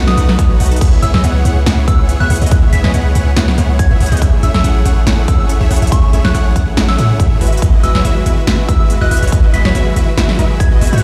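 A half-time future bass groove at 141 BPM with a light 16th-note swing carries this dreamy, lush passage from a longer piece, moving from B7 to C#m7, Amaj7 and Emaj9/G#. Huge, detuned supersaw chords and a deep, boomy 808-style bass pump under sidechain as an up-front punchy electronic kick lands from 0.4 seconds, over a layered dance kit already in from 0.1 seconds with a punchy snare, crisp hats and a tape-tinged sheen. Two very quiet unison plucks, one bright and one mellow, spin arpeggios beneath a soft, warbling FM bell melody with chorus and digital delay sitting in the background, all set in a large, reverberant room.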